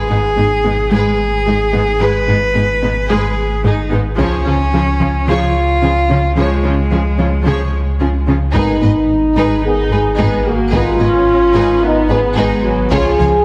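A solo cello carries the melody up front, its clear, intense bowed tone with vibrato trailed by tape echo until it drops away at 8.2 seconds. This tense, brooding hybrid orchestral and electronic film cue moves at 110 BPM in a straight 4/4, in G# dorian, alternating between G#m and C#. Beneath it, a background violin section sings a focused, smooth-topped line. A lush viola section holds even accompaniment, and a cello section anchors the bass alongside a deep, punchy sub bass with a pitch-drop attack. A soft, round synth pluck, very quiet and dark with chorus, spins arpeggios throughout, and a very quiet taiko ensemble with heavy sticks first thumps in at 4.2 seconds. From 8.5 seconds the texture thickens: a mellow French horn section sits up front with sustained chords, a dark, distant trombone section adds its own held chords, a second, intense violin line enters, and an expressive double bass section reinforces the low end, with the taiko returning. 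The whole is bathed in a wet scoring-stage reverb and squeezed into a heavily compressed, radio-like sound, and the passage is cut from a longer piece.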